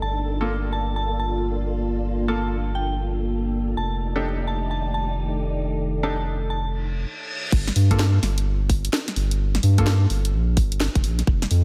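A moody, late-night slice of two-step UK garage with a skippy, swung feel, cut from a longer piece and set in a light reverb. It opens on a soft, pure FM synth bell melody drifting through chorus and diffuse ambient delay. Under the bell sit a silky vintage string machine with phaser and ensemble chorus, and a deep, dark ambient pad with its own chorus and reverb, both pumping against the sidechain. A thick, saturated sine sub bass holds the low end up front throughout, while a brilliant, intimate baby grand piano with audible action noise adds short stabs through an analog delay from 0.4 seconds. An electronic reverse cymbal at 6.8 seconds leads into the drop at 7.5 seconds, where a tight, up-front electronic kick and a garage kit of crash, hi-hat and cracking snare come in alongside the bass and piano as the chords settle from Gm9 and F13 onto Gm.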